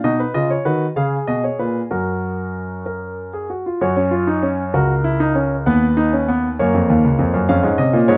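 Lively and joyful, this short cut from a longer baroque-style three-part fugue for solo grand piano moves in a straight 6/8 at 65 BPM, counted in dotted quarters, in F# major. The piano sounds natural and up front, spanning C#2 to E#5 in a studio with moderate reverb. The chords run from Badd9 through C#7 to F#, and after a second section begins at 3.8 seconds they pass through F#7/C# and B/D# before closing on C#/E#.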